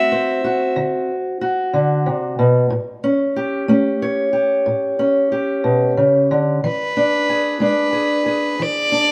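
A slow, rolling 12/8 pulse with a straight feel carries this laid-back yet rollicking piece of acoustic country blues, heard as a short cut from a longer performance. A fingerpicked steel-string parlour guitar plays the accompaniment from start to finish, its dark, boxy tone sitting up front as the harmony moves from D7 to A7 at 2.7 seconds and on to E7 at 6.6 seconds. A single bowed fiddle carries the melody in a narrow upper register, with a gut-string, reedy voice and a smooth top. It sounds only briefly at the opening, then returns at 6.6 seconds and plays through to the end, standing up front beside the guitar. The two players were recorded live together in one room, and a stone room's lingering reverb wraps around them.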